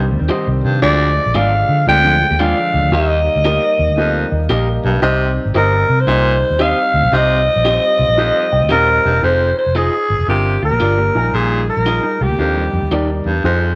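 Passionate and driving, this swung soul excerpt in C minor at 114 BPM puts a raspy, growling alto saxophone melody up front from 0.8 seconds over a clear baritone saxophone riff, a round, foam-muted electric bass, woody upright piano accompaniment with a fill at 8.2 seconds, slightly broken-up guitar stabs, a mellow background guitar riff, and very quiet, lightly overdriven tonewheel organ chords through a slow rotary speaker that stop at 9.2 seconds, as the chords move from Cm through Fm7 to Ebmaj7 in light studio reverb.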